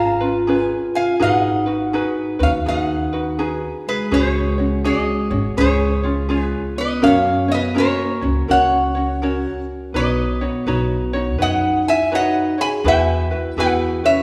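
Sunny and dreamy, this Hawaiian piece, cut from a longer performance, drifts along in a relaxed swung 4/4. Up front, a lap resonator guitar carries the melody with a bright, nasal, metallic slide tone picked with fingerpicks. A vibraphone played with soft mallets adds a mellow second line, its ringing notes colored by a slow motor vibrato and a vintage, band-limited quality. A light, fingerpicked ukulele sits up front with the accompaniment, while a pizzicato upright bass on steel strings gives a woody, thumpy, warm foundation. The harmony settles onto F# at 7.0 s before a new section opens at 9.9 s on lush added-ninth chords, all bathed in the reverb of a wet recital hall.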